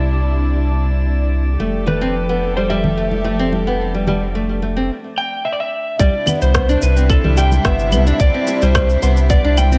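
A straight 4/4 pulse at 109 BPM carries this warm, mystical fragment of organic downtempo, opening on a round, up-front sine sub bass, dark bowed chamber strings playing sul tasto chords with a sidechain pump, and a glassy, drifting harmonics texture set back in chorus and reverb. From 1.6 seconds, a fingerpicked nylon-string guitar adds classical arpeggios with 12-bit sampler grit and delay, and bright congas and bongos sit close but in the background; at 1.9 seconds a compressed, slightly broken-up electric slide guitar takes up the melody through tape echo. After a brief break, the section at 6.0 seconds brings a tight electronic kick with produced shaker, claves and rim click, as the chords move from Cadd9 through Fmaj9 to Cmaj9 in a light reverb.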